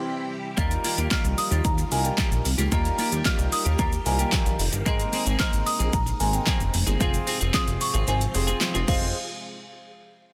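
Dance-pop in F minor at 112 BPM, energetic and confident, moving in a straight 4/4 through a short passage cut from a longer piece. From the start, a woody marimba with soft mallets carries the melody high up, touched by tape echo, while a clear baby grand piano comps beneath and a swirling, vintage string machine holds bright sustained chords in the background, its phaser and ensemble chorus giving it motion. At 0.6 seconds the groove arrives: a punchy, overdriven pop kit with fat snare, metallic hats, handclaps, shaker and crash sits up front alongside a glossy, retro synth bass with filter sweeps that breathes with sidechain pumping, as do the piano and strings. A twangy clean electric guitar plays a compressed riff through lush chorus, and a grainy tube shaker adds very quiet detail. The harmony moves from C to Ebadd9, Abadd9 and Fm, the kick drops out for the final second of the section, and the mix is dense and heavily limited with a digital ambience.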